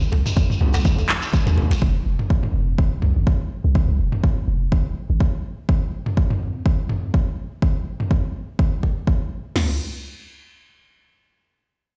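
Afro house at 124 BPM in C minor, with a swung sixteenth feel and an earthy, spiritual mood, this short cut from a longer piece opens with a dense burst of hand percussion over a deep, boomy 808-style bass. The bass, sine-based with a noise layer, fast attack and mellow decay, sits up front with sidechain pumping and a filter sweep, and it drops out at 5.2 seconds. Tight, cracking djembe sounds close and dry against grainy shekere and ringing, medium-tuned congas played with soft hands, which sit distant in a large room; all three fall away by 1.8 seconds. Two layered, overdriven deep house drum kits carry the groove: one, voiced with a deep kick and punchy snare sound, adds handclaps and toms until 8.1 seconds, while the other drives kick drum, snare drum, crash cymbal and toms through to 9.7 seconds. Both kits were re-recorded in a large room and sit up front. The whole mix comes across as if played on a big sound system in a bare room, with stone room reverb, before a brief new section begins at 9.6 seconds.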